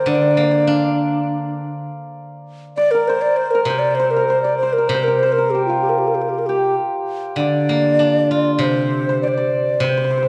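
A wet recital hall reverb, about 1.5 seconds long, surrounds this short excerpt of Chinese traditional chamber music, wistful and graceful in mood and flowing in free, rubato time. The mellow bamboo xiao carries the melody from the first moment, its end-blown tone airy, touched with vibrato and given a crisp attack. Beside it, a hammered dulcimer plays a second line in a similar register, shimmering and ringing from a forward place in the sound. Below them, a steel-string zither played with fingerpicks supplies the accompaniment from 0.1 seconds onward, its silvery tone sitting near the listener. Around 7.4 seconds the music moves into a new section, and all three instruments continue together until the close at 10.3 seconds.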